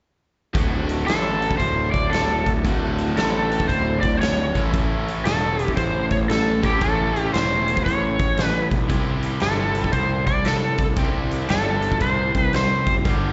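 An overdriven slide guitar sits up front from 1.1 s, its bright, fingered melody trailed by slapback and tape echo, in this driving, swaggering blues rock and southern rock excerpt with a swung 4/4 feel. Beneath it, a raw, double-tracked garage guitar riff with overdrive and slapback echo, a growly fuzz bass and a huge arena drum kit with a punchy kick, medium-tuned snare and hi-hat roll through D, A and C. It sounds like a live gig heard through the venue's PA, washed in recital hall reverb and dulled at the top end.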